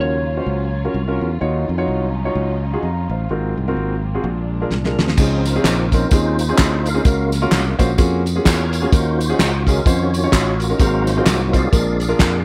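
This uptempo gospel piece, cut from a longer performance, opens at a swung 128 BPM in Db major. A dark, compressed slide guitar phrase sits over a grand piano with deep bass and long sustain, a round, punchy fingered bass, and a bowed string section whose chords carry vibrato and portamento until 5.2 seconds. A fat-snared soul drum kit with dark cymbals enters with a fill at 4.7 seconds, and from 5.2 seconds a lightly overdriven tonewheel organ with key click, chorus vibrato and a slow rotary speaker takes a solo while distant tambourine and handclaps join in, all in a hopeful, reverent mood with a dry, close 1970s-style studio sound, small room ambience and faint mains hum.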